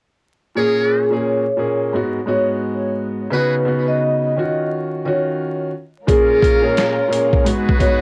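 This dark, tough boom-bap hip-hop excerpt at 87 BPM opens at 0.6 seconds with a mellow soft-mallet vibraphone carrying the melody over an intimate concert grand piano, whose audible action noise and deep bass sit up front with a vintage cassette tint. A muted trumpet section adds buzzy, punchy stabs with a metal mute and light vibrato, its brilliant tone trimmed by filtering and trailed by analog delay, which also colors the ringing vibraphone. The harmony moves through Bbm7, Abm7, Db9sus4 and Ebm9 with a swung sixteenth-note feel. At 6.1 seconds a gritty, pitched-down sampler-style drum kit arrives with a thumpy kick, medium-tuned snare and hi-hat, while a lush bowed string section with portamento hovers distant in the background. Light reverb, vinyl crackle and the character of a home cassette recording give the whole clip a dusty, lo-fi atmosphere.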